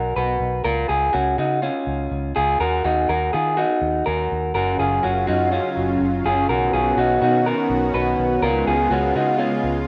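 This short indie pop excerpt opens with an electric guitar played through a small old amp, picking warm arpeggios up front in a slightly broken-up, lo-fi tone, with tape echo trailing each note. A vintage fingered electric bass plays beneath it from the start, dark, round and foam-muted, sitting low in the mix. At 4.5 seconds a lush unison pad enters with slow-attack sustained chords, its thick, detuned sawtooth and square-wave body shimmering with chorus and pushed up front alongside the guitar. The harmony moves from a Bmaj7 with its third omitted through C#, D#m, F#maj7 and Bmaj7 before landing on C#7, giving the piece a youthful, bright mood in a straight 4/4 feel. A wet plate reverb with a long tail surrounds the parts, and the whole has the rough character of a home demo mix.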